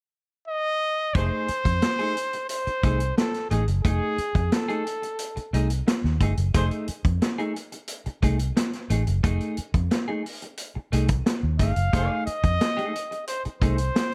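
A mellow solo trumpet with light vibrato opens this playful, strutting funk excerpt in F mixolydian, playing its melody alone from 0.5 seconds. At 1.1 seconds the band arrives on an F7#9 chord at a straight 89 BPM in 4/4: a vintage drum kit with a punchy kick, medium-tuned snare, hi-hat and a rolled-off top, plus a dark, round, foam-muted fingered electric bass sitting up front. A clean, compressed electric guitar fills in the accompaniment with subtle chorus and plate reverb, while a distant, roomy horn section adds brief, punchy second-line figures. The trumpet leads in a classical style with plate reverb, pauses, then returns at 11.6 seconds for a final phrase. The whole recording is set in a light reverb.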